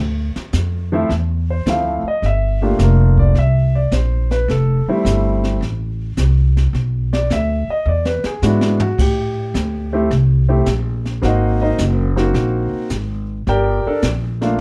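A dark, lightly reverberant production frames this smoky, late-night jazz piano trio excerpt. Thumpy, woody gut-string upright bass sits up front from the opening. Brushes on a small-room kit with dark cymbals, a high-tuned snare and a boomy kick carry the swing and drop a fill from 7.9 to 9.0 seconds. A warm concert grand with deep bass and long sustain solos throughout over minor-seventh, suspended and ninth chords.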